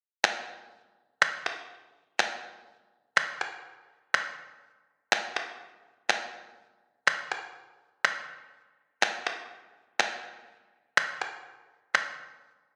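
A pitched-down, muffled electronic finger snap arrives at 0.2 seconds and carries this short pop fragment on its own, sitting up front in the sound. The tempo is a steady 123 BPM in 4/4 with a straight feel, and the mood is bittersweet yet energetic. The snaps have a sampler-style, compressed character that gives them a dull weight. A moderate plate reverb with digital ambience hangs around each snap, while the overall sound suggests a phone capturing the room, adding a further layer of studio reverb and compression. The snaps stop at 12.1 seconds, and the passage reads as a single section cut from a longer piece.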